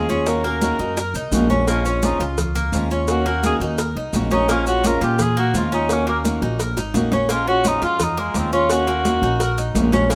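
A mellow, distant cor anglais with light vibrato carries a sultry, nostalgic melody and takes a solo from 1.7 seconds in this 171 BPM Cuban son and guajira excerpt, over a boxy fingerpicked swing-style acoustic guitar, metallic double-strung tres arpeggios, a woody, thumpy upright bass up front, bright high-tuned congas, round low-tuned bongos and cowbell with a drum fill at 6.8 seconds, and grainy maracas, all moving between Ebm7 and Bbm7 in light reverb.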